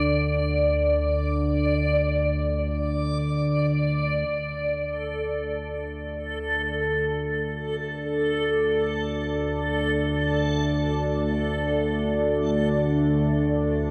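A cavernous, desolate dark ambient piece in free time, cut from a longer work, opens with an up-front, warbling analog drone sweeping through a filter beneath a reversed, granular texture that swells in its own reverb; at 4.3 seconds a bright, detuned resonant pad enters on a D5 chord and fades in alongside the drone while the backwards texture fades out, the mix soaked in a dreamy, cathedral-scale reverb.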